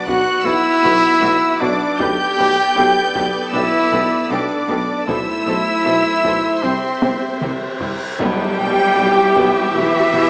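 A steady, straight 4/4 pulse driven by close, dry taiko drums anchors this dark, dramatic orchestral film-score excerpt, where a clear violin section carries the high melody over warm second violins, airy distant flutes, lush sustained strings, soft-attack viola, mellow distant French horns and a tuba, cello and double bass bass line, while an up-front trumpet punches out stabs until 7.4 s, a cymbal swell and tam-tam join at 5.1 s, and a drum fill and faint reverse cymbal lead into a huge, bright impact with round timpani at 8.2 s, all set in a reverberant scoring-stage space with a small-speaker tone.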